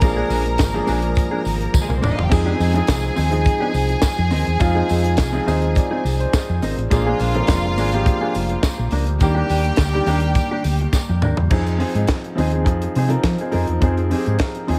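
Disco at 104 BPM in F dorian, sultry and danceable, with a tight funk drum kit and a round, dark hollow-body fingered bass up front alongside a boxy concert grand piano (which takes a fill at 5.2 seconds), a mellow, compressed electric guitar and a jingly tambourine in the background, and a biting, clear string section with light vibrato that drops out at 11.2 seconds, all in a small room on this fragment cut from a longer piece.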